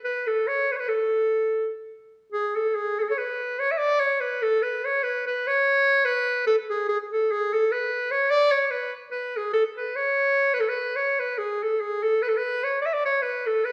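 In free time, a solo clarinet with a clear, smooth top plays up front in a classical style across a wild, festive Balkan folk passage cut from a longer piece, recorded live in a single room and ringing through a wet stone space with a 1.2-second reverb, with a brief opening section giving way at 2.3 seconds to a longer one that runs to 13.7 seconds.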